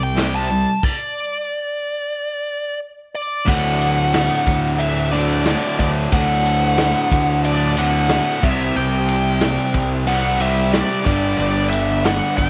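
Swaggering and driving, this classic rock excerpt moves at 91 BPM in a straight 4/4, centred on D mixolydian. It opens with a dark, distorted lead guitar soloing alongside two picked electric guitars on the riff, one bright and up front, the other compressed and very quiet, over a fuzzy, up-front electric bass, with the vintage drum kit joining at 0.2 seconds. The band stops from 0.8 to 3.5 seconds while the lead guitar, coloured by wah and slapback echo, carries on with its solo. At 3.5 seconds the full groove returns over D, C and G, with the punchy kick and medium-tuned snare set in a natural small-room sound. A very quiet tonewheel organ adds sustained chords through a slow rotary speaker with key click, and a jingly, close tambourine enters at 3.8 seconds. Light reverb gives the whole a compact, live feel.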